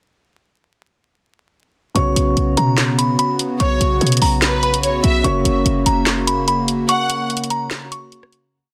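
A delicate, tinkling FM synth tine bell carries a warbling, looping melody through chorus and delay, set over a dark, boxy concert grand playing held open-voiced chords and a hollow, flute-like pad, giving this short, complete trap piece a melancholic, brooding mood. An up-front electronic drum kit, with a woody snare layered with clap and fast hi-hat rolls, drives a half-time beat from 2.0 s alongside a punchy, tight 808-style bass holding long sub-bass notes, while a reedy, gut-string violin section adds a sparse counter-melody from 3.6 s. The dense, heavily limited master carries vinyl crackle, and the track breaks down and fades out from 6.9 s.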